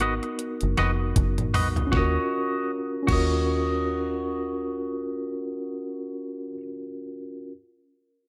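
A short cut from a longer lovers rock reggae piece opens at once with a mellow tine electric piano, a twangy electric guitar, a deep dub bass and a detuned 8-bit drum machine, all set in Eb minor at a relaxed 78 BPM with a swung sixteenth-note feel. The mood is smooth and bittersweet, the clean electric piano sitting up front and sounding as if heard through its built-in speakers while it holds a rootless Abm7 before moving to Ebm7 at 1.9 seconds. Over it the picked, compressed guitar plays warm, twangy stabs bathed in spring reverb, while the foam-muted fingered bass stays dark and round in the low register. The sampler-style drum machine is overdriven and roomy, with a thumpy kick, a medium-tuned snare, rim clicks, hi-hat, toms and a crash, and it rolls through a fill just before the chord change before dropping out at 3.3 seconds. The bass, guitar and piano carry on a few seconds longer under a light reverb, the piano lingering last until 7.5 seconds.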